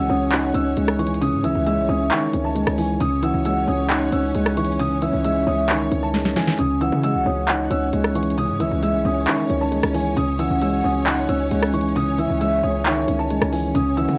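A half-time trap groove at 134 BPM in C# minor drives this eerie, dark hip hop excerpt: an up-front electronic drum kit of sharp snare, crisp hi-hats, handclaps and rim clicks enters at 0.3 s and plays a fill at 6.1 s, a punchy, heavy 808-style bass anchors the low end, a boxy, deep grand piano carries the accompaniment, a mellow felt-muted upright piano with audible action noise plays the high melody, a hollow, woody clarinet-like synth lead with chorus and analog delay adds a second line, and lush bowed strings hold sustained chords, all under light reverb with the vinyl crackle of a home cassette recording.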